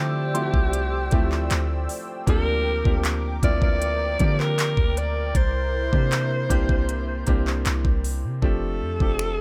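Contemporary R&B at 78 BPM in F major, this dreamy, romantic fragment sets a raspy, gritty alto saxophone melody with vibrato and delay over clear, slightly worn grand piano chords, a dark, detuned sawtooth pad with chorus that drops out at 8.4 seconds, a deep, boomy 808-style bass, a soft FM synth bell with chorus and delay glinting in the background, and an up-front electronic drum kit of knocking kick, smooth hi-hats, finger snaps and handclaps that enters at 0.3 seconds, its hats muted from 8.4 seconds as the Dm11, Bb6/D and C7 progression moves to F6, all in a dry mix.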